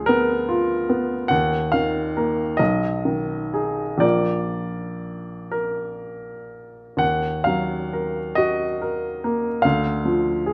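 Classical romantic nocturne for solo piano in Eb minor, unfolding in a slow, rubato 12/8 at roughly 39-50 BPM with a yearning, wistful mood. A clear, polished baby grand sits up front, spanning from Bb1 to Gb5 as it moves through Ddim7, Abm/Cb and Bb before settling on Ebm at 7.0 seconds and turning to Dm at 9.6 seconds. A moderate recital hall reverb and dark production frame this brief excerpt, cut from a longer piece.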